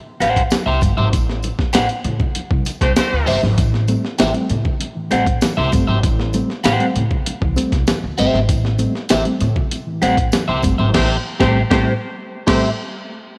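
Driving and hypnotic, this funk groove at 98 BPM in A dorian sits on a single Am7 chord in a light, small-room ambience, with a gritty, compressed breakbeat-style kit up front beside a slightly broken-up picked electric guitar through a phaser, a woody, growly pizzicato upright bass, very quiet congas and a jingly tambourine in the background, a reedy, worn electric piano adding stabs with fast tremolo from 3.6 s, and a clear, tight horn section with slapback echo and octave doubling briefly at 2.8 s and again from 10.9 s over band accents.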